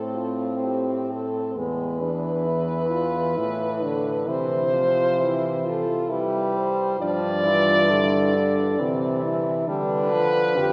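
In a rubato triple metre, this elegiac, yearning classical passage for horn quartet is cut from a longer piece, with all four French horns sounding together from 0.0 to 10.7 seconds. The melody horn sits up front with light vibrato, while a soft-attacked second line lies in the background, a distant, roomy accompaniment horn fills the middle, and a mellow, smooth-topped horn carries the bass. Harmonies move from A minor through E, C and G to close on D minor, all bathed in a long church reverb.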